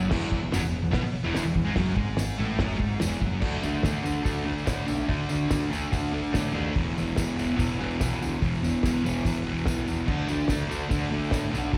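Heard through a venue's PA with recital-hall reverb at a live gig, this raw, rowdy garage rock clip in E mixolydian charges along at 145 BPM in straight 4/4, led by an up-front, double-tracked fuzz guitar riff over a growling, overdriven picked bass and a cloth-damped, thuddy drum kit with a fat snare, tight kick and dark cymbals, while a jingly tambourine sits in the background and the chords move from E to D5 at 3.4 seconds and E5 at 6.8 seconds.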